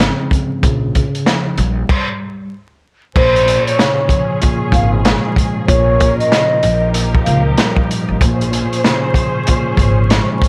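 Vinyl crackle and light reverb frame this moody, reflective boom-bap hip-hop excerpt at 95 BPM, swung on the 16ths. Up front, a crunchy, saturated breakbeat kit with dark cymbals plays alongside a woody pizzicato upright bass and a mellow tine electric piano heard through its built-in speakers, moving through chords such as Dbmaj7 and Bbm. After a stop at 1.9 seconds, an airy, hollow concert flute with vibrato carries the melody from 3.2 to 7.4 seconds, while a veiled, con sordino string section sustains distant, lush chords beneath.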